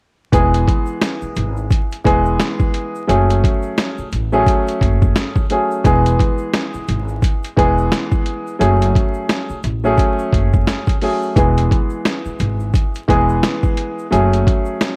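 A gritty, overdriven sampler-style drum kit sits up front in this soulful, confident boom-bap hip-hop excerpt at 87 BPM, with a thumpy kick, a medium-tuned snare and hi-hat swung on the 16ths. A woody, growly pizzicato upright bass holds the low end until 14.4 seconds, while a deep, short-sustained concert grand piano, filtered at both ends, alternates between E and F#madd9 chords in E major, and a grainy egg shaker sits very quietly close and dry. The dry recording carries worn, warbling cassette tape with vinyl crackle and pitch drift.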